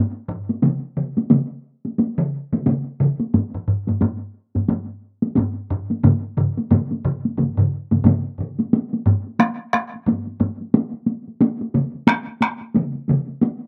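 The recording is dry and close, captured outdoors with very little reverb, so the drums land with a direct, immediate presence. It is a driving, powerful passage of Japanese traditional taiko drumming, cut from a longer piece, moving at 89 BPM in 4/4 with a swing on the sixteenth notes. Three taiko ensemble parts, each played with heavy sticks and placed up front, enter within the first second, and two of them carry an acoustic, small-room character. The third part is compressed and saturated, which gives it a dense, gritty edge. The music moves into a new section at 8.7 seconds, and the first ensemble drops away at 10.6 seconds while the other two carry on to the close.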